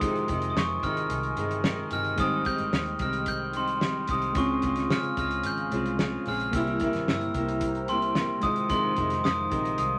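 Vinyl crackle and a laid-back, nostalgic bedroom-pop groove open this excerpt together at 110 BPM in a straight 4/4, tuned to A4 = 441 Hz. A bell-like glockenspiel struck with soft plastic mallets carries the airy melody up front, while a bright, fingerpicked nylon-string guitar with a vibrato effect plays accompaniment beneath it. Round, gentle electric-piano-like synth keys with chorus sit in the background, joined by a warbling, detuned, lo-fi tape-like pad holding sustained chords with its own chorus and reverb. A foam-muted, punchy vintage electric bass anchors the low end, and a dry 70s drum kit with a fat snare, tight kick and hi-hat sits close in the mix until 9.9 seconds. The harmony moves from Fm7 through Abmaj7, Dbmaj7 and C7 before landing back on Fm7 at 8.4 seconds, all inside a moderate studio reverb.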